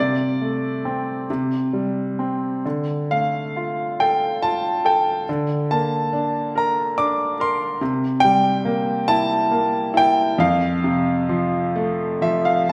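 A wet concert-hall reverb with a 2.0-second decay surrounds a bright, intimate grand piano that sits up front, its action noise audible and its notes ringing with long sustain. This peaceful, calm classical excerpt for solo piano moves in an uneven 6/8 with free rubato, spanning F2 to D6 as the harmony drifts from Amadd11/C through Dm and Bbmaj9/D to C7 before settling on F. A brief piano fill closes the passage at 11.8 seconds.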